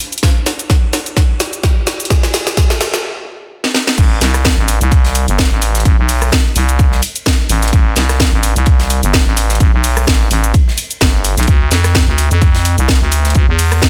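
Swung sixteenths in 4/4 drive this swaggering, aggressive bass house excerpt, where a house drum kit with a cracking, softly clipped snare and a punchy electronic kick build up through drum fills and a stop until the drop at 4.0 seconds brings in a growling, thick FM bass with sidechain pumping, backed by a very quiet, airy acoustic country drum kit with ride cymbal, all in a dense, heavily limited modern master.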